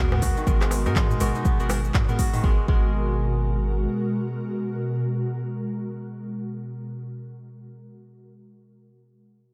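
A swung 122 BPM afro house groove in G# minor opens on a drop, with an up-front deep electronic kick, a tape-toned afro-pop kit of crisp hats, handclaps, shaker and toms, and very quiet, close congas and a dry clay-shelled darbuka played with soft hands. Over a round, dark analog bass, a ringing fingerpicked kora spins arpeggios through analog delay, while detuned, wave-folded analog keys stab in the background and an ethereal, airy pad holds a G#m9 chord with ensemble chorus and phaser, all pumping against the kick. The percussion falls away by 2.8 s, the bass drops out by 3.9 s and the kora by 4.8 s, leaving the spiritual, warm, reverb-soaked haze of pad and keys to drift on until 7.1 s in this dreamy excerpt.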